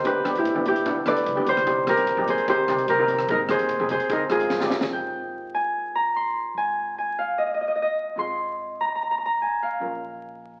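Calypso with a bouncy, festive feel at 147 BPM in Ab major, this short cut from a longer piece puts a fingerpicked, ringing Celtic harp up front on the melody, with shimmering, metallic steel pan chords struck with hard rubber sticks and a woody pizzicato upright bass sitting in the background. A crisp, polished drum kit with a high-tuned snare and punchy kick plays alongside dry, thin-skinned congas until a drum fill from 4.5 s leads them both out at 4.9 s, leaving harp, pan and bass for the second section. The whole piece sounds like a very old 78 rpm record, with vinyl crackle and a wet, large studio reverb.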